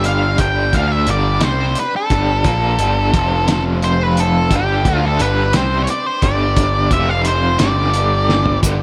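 From the first moment, a dark, up-front octave-fuzz lead guitar takes a solo over the full band, its tone soaked in distortion and tape echo. Beneath it, a raw garage guitar plays a bright, double-tracked, overdriven riff with tremolo and its own tape echo, while a fuzz picked electric bass sits forward with a thick, amped growl. A cloth-damped drum kit thuds along in 6/8 with a fat snare and tight kick, its muffled, lo-fi sound rolled off at the top, and a drum fill arrives at 8.3 seconds. Far back in the balance, a vintage combo organ holds buzzy sustained chords with heavy vibrato as the harmony moves between G and F5. A grainy tube shaker appears only at 8.6 seconds, just before this hypnotic, kaleidoscopic psychedelic rock fragment of a longer piece cuts off, its echo-heavy mix set in a small, lightly reverberant room.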